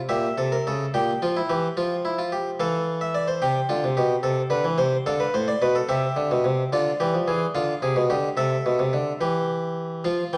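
Classical baroque-style three-part fugue for solo harpsichord, stately and joyful in a straight 12/8 at 72 BPM in dotted quarters, where a bright, plucked, close-miked French-style instrument with a single set of strings sits up front across A2 to G5, its chords moving from F through Dm7 to C, all heard through a recital hall's lingering reverb and the warbling pitch drift of worn old cassette tape in a passage cut from a longer piece.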